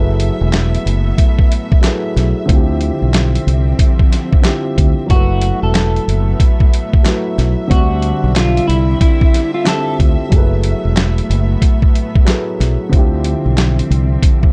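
Swung sixteenths at 92 BPM drive this moody boom-bap hip-hop groove: a gritty, compressed sampler-style kit of thumpy kick, medium-tuned snare, hi-hat and handclaps sits up front beside a round, punchy fingered electric bass, while a dark, intimate baby grand piano with audible action noise and lush bowed strings with vibrato, both in plate reverb, voice F#m11 and Dm11 chords, and a slightly broken-up electric guitar carries the melody through analog chorus, analog delay and plate reverb from 5.1 to 10.0 seconds.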